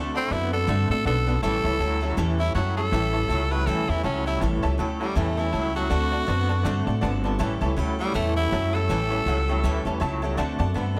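A light reverb gives this short cut from a longer rockabilly number a lively, roomy feel, and the mood is upbeat and rollicking at 161 BPM in 4/4 with a gentle swing on the eighth notes, centred on A mixolydian. Up front, a woody, thumpy upright bass on gut strings anchors the low end, while a raspy tenor saxophone enters at 0.2 seconds with a gritty, vibrato-laden pop-style line and takes a solo from 4.4 seconds to the end. An electric guitar through a small old amp plays a twangy, slightly broken-up riff with tremolo and a lo-fi, compressed edge. A full-bodied jumbo steel-string acoustic guitar is picked beneath it, and a detuned, jangly honky-tonk upright piano sits in the background, slipping in a short fill at 9.8 seconds. The harmony moves between D7 and A7 throughout.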